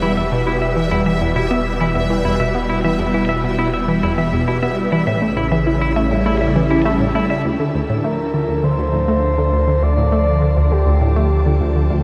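Bathed in a wet shimmer reverb, this hypnotic, expansive ambient fragment sets swirling, vintage string-machine chords over a deep sine sub bass and a round analog pluck riff with tape echo, while a bubbling, resonant stepped-filter texture glints high above, a clean hollow-body electric guitar plays arpeggios until 7.4 s as the harmony moves from Em through A7 to Dm, and a breathy, flute-like synth lead carries the melody from 8.0 s.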